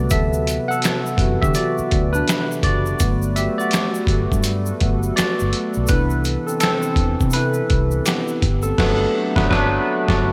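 A 16th-note swing in 4/4 drives this sensual, warm neo-soul R&B excerpt, where a barky, bright tine electric piano with analog chorus takes the lead up front over chords moving from D13 to Gmaj9 and Cmaj7. A gritty, overdriven sampler-style drum kit with a thumpy kick, crash, hi-hat and finger snaps sits up front alongside a round, foam-muted fingered electric bass, while a close, dry tube shaker with finger snaps adds detail until 8.8 seconds. A hollow, flute-like pad with chorus hangs softly in the background, and the band lands an accent from 8.8 seconds to the end in light digital ambience.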